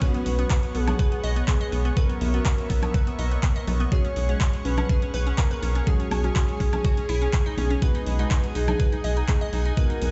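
Progressive house with a euphoric, hopeful mood, this clip from a longer piece sits in a drop where a lush, warbling unison pad and a round, octave-layered synth lead carrying the melody are both coloured by chorus and sidechain pumping, the lead adding 12-bit sampler grit and tape echo. A glassy wavetable pluck spins arpeggios through phaser and digital delay, while a deep, dark chord stab sits in the background and a tight sequencer bass with tube saturation enters at 0.3 seconds under a knocking, overdriven kick held up front. A big-room kit of handclaps, metallic hats and woodblock drives the groove, congas join at 0.9 seconds, and the chords move from Bsus2 to F#sus2/B to G#m7/B inside a stone-room ambience.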